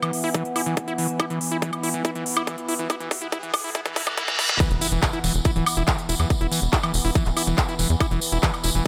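A squelchy, distorted acid bass riff with dub echo drives this alien psychedelic trance excerpt at 141 BPM, pumping alongside a resonant drone of sustained chords with moving overtones and chorus, while a punchy overdriven kick and an up-front big-room kit of crisp hi-hat, handclaps and woodblock build under filter sweeps, a drum fill and a background riser and reverse cymbal until the drop at 4.6 seconds, where an impact lands, a jingly acoustic tambourine joins and a tight, mellow square-wave sequencer bass takes the low end, set in a light digital ambience.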